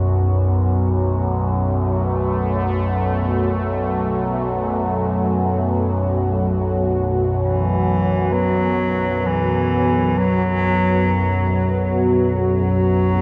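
In free time, this vast and ominous dark ambient drone rests on a B5 chord, with a deep overtone-sweeping drone in sawtooth and sine tones carrying chorus, phaser and moving overtones, beneath a full-bodied, detuned resonant pad whose sustained, ring-modulated chords carry a bright filter swell. A soft bronze singing bowl struck with a felt mallet rings in the background with slow, metallic beating. At 7.4 s a distant, roomy bass clarinet enters with a solo classical-style melody through delay, all of it bathed in a huge ambient reverb and the warble of worn cassette tape.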